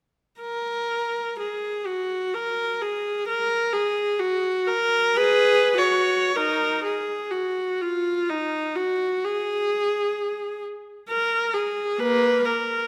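Classical in style, this brief passage for unaccompanied viola is mournful and yearning, moving freely in three with an expressive rubato. A single bowed viola carries the whole line from 0.4 s to 12.9 s, its tone clear and focused, shaded with vibrato and placed close and up front. The instrument ranges from Bb3 up to Db5. The fragment falls into two sections, with the second beginning at 6.4 s. A moderate reverb, like that of a scoring stage, gives each phrase a gentle tail.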